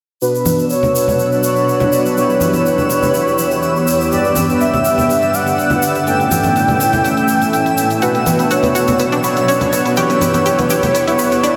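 Built on a straight 4/4 progressive house groove at 123 BPM in B minor, a warm hi-hat, grainy distant tube shaker and bright compressed bongos and congas sit in the background beneath filter-swept supersaw stabs, a shimmering ethereal pad, a sparkling granular twinkle and a smooth, dark synth lead with vibrato up front, while a round detuned analog pluck arpeggio joins at 8.0 seconds, all soaked in a huge reverb that makes this expansive, bittersweet excerpt feel dreamy as it moves through Bm, Em, G and A.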